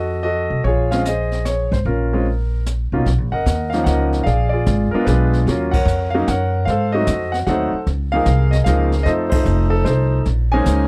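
A baby grand piano carries the melody up front, its tone warm and natural with a long sustain that hangs over this smoky, late-night jazz piano trio in Bb minor. The music moves in 3/4 at 150 BPM with a swung eighth-note feel, and an upright bass played pizzicato sits up front beside the piano, woody and thumpy on its steel strings. A brush drum kit joins at 0.6 seconds, its dark cymbals, high-tuned snare and boomy kick sitting further back in a natural studio room. The harmony moves through rich extended chords such as Bbm9, Bmaj9#11, Ebm9 and Ab7b9 before settling on Bbm11, and the whole trio hits accents together at 5.7 and 9.3 seconds. The sound is dry and close, in the manner of a 1970s studio recording, and the passage is cut from a longer piece.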